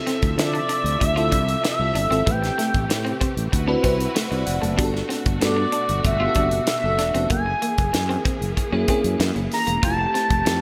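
Polished 1980s jazz-funk pop with an urban, bittersweet mood, this short excerpt moves at 95 BPM in a straight 4/4 over rich chords such as Dm9, Gmaj9 and F#9. A tight funk drum kit with a high-tuned snare sits up front beside a growly fretless bass, while a sparkling FM electric piano with tremolo and chorus, a lush bowed string section and a twangy, slightly broken-up guitar riff in the background fill out the accompaniment. From 0.4 seconds a nasal, expressive sawtooth synth lead carries the melody with vibrato, chorus and delay, all set in moderate plate reverb and bright digital production.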